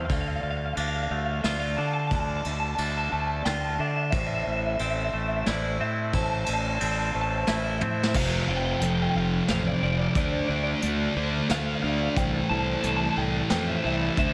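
A lush hall reverb gives this brooding, cinematic post-rock excerpt in 3/4 a big arena sound, anchored by an up-front brush drum kit with dark cymbals and a punchy kick, and a growly, overdriven fuzz bass. A bright, compressed twelve-string electric guitar carries the melody through slapback and tape echo, while a twangy clean guitar and a mellow soft-mallet vibraphone play echoing arpeggios, the vibraphone set back in the mix with slow motor vibrato. After a drum fill, two thick, dark fuzz guitars enter with a distorted riff at 8.1 seconds, and the twangy guitar drops out at 8.2 seconds.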